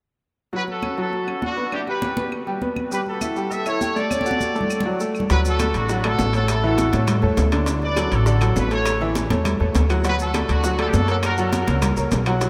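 At 0.5 seconds, a sunny, danceable salsa opens with a bright, slightly detuned upright piano, up front with audible action noise, comping alongside thick-skinned, compressed congas struck with hard hands. A punchy vintage horn section with light vibrato joins almost at once to carry the melody. Very quiet, dry claves follow, and grainy maracas in the background join at 2.9 seconds to fill out the percussion. The tune moves at 202 BPM in D major, tuned to A4 = 438 Hz, with early chords that include Dmaj7 and a rootless Em7, before a drum fill at 4.1 seconds. From 5.3 seconds, a dark, thumpy pizzicato upright bass on gut strings arrives up front, together with tight bongos and ringing metal-shell timbales, as the harmony shifts between D and A and ends on F#. A vast cathedral reverb washes over the whole mix, giving this fragment of a longer piece a cavernous, echoing sheen.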